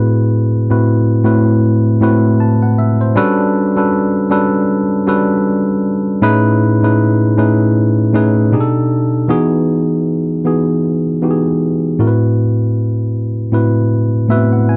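A dry, close recording in a 1970s studio style places a lone tine electric piano up front, its worn, slightly out-of-tune tone heard clean through a combo amp. This warm, romantic soul fragment moves with a gentle 16th-note swing through lush harmonies such as Am6, Gmaj9#11 and B7alt before settling onto Emaj9 as a new section begins at 9.3 seconds. The piano closes the cut with a brief fill starting at 13.9 seconds.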